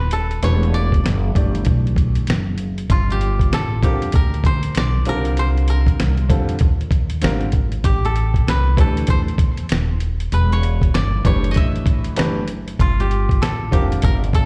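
A mellow, nocturnal jazz-hop excerpt at 97 BPM opens at 0.0 s with a fingerpicked koto melody, treated with plate reverb, slapback and tape echo, over a dark, woody pizzicato upright bass up front, joined at 0.1 s by a gritty, compressed sampler-style drum kit with a thumpy kick, fat snare and hi-hat swung on the 16ths, and at 0.4 s by a bright, smooth vintage upright piano with slapback echo comping through Em9, Gm9, Cm9 and A7sus2, all heard as if from a live gig through the venue's PA.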